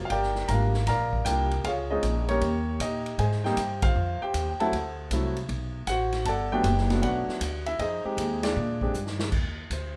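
Grand piano and upright bass open together at once, with the piano carrying the melody between Gb3 and Bb5 in a relaxed jazz piano trio excerpt swinging at 156 BPM in 4/4. The piano sounds warm and natural, sitting up front, while the pizzicato bass on steel strings is woody and close, moving from F#1 to Bb2. The big-band drum kit joins at 0.1 seconds from farther back in a roomy studio space, its dark cymbals, medium-tuned snare and boomy kick set behind the other two. The harmony moves through changes such as Gm7, Abmaj7, D7, Gmaj7 and Bb13, with band accents at 3.8 and 8.4 seconds. A drum fill arrives at 8.9 seconds just before the passage closes, all of it wrapped in moderate large-studio reverb.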